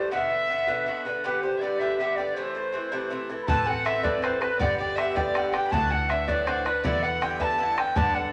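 A wet studio reverb surrounds this short cut from a Celtic jig in A dorian, dark, lively and wild, in 6/8 at 107 BPM. An airy wooden flute carries the tongued melody with vibrato from a distance, while a biting bowed fiddle plays a second line beside it over the metallic, up-front picking of an Irish bouzouki with its double strings. At 3.5 seconds a very quiet, ringing fingerpicked concert harp adds another line, a bowed double bass enters with expressive portamento, and a boomy, close bodhran drives the percussion until 8.0 seconds.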